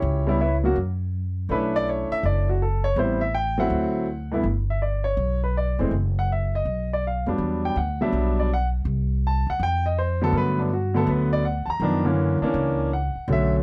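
A swung eighth-note feel in 4/4 drives this cool, smoky jazz piano trio piece, cut from a longer performance. A clear concert grand piano carries the melody across its whole length, its deep low end and natural tone sitting up front beside a woody, growly upright bass played pizzicato on steel strings. Both parts sound from the first moment to the close at 13.6 seconds, set in a dark, warm production with light reverb. The harmony moves through rich extended chords such as Bm11, D9 and Gmaj9, broken by brief chordless moments. A new passage begins at 4.4 seconds and settles on G before winding toward a tense F#7b13 at the end.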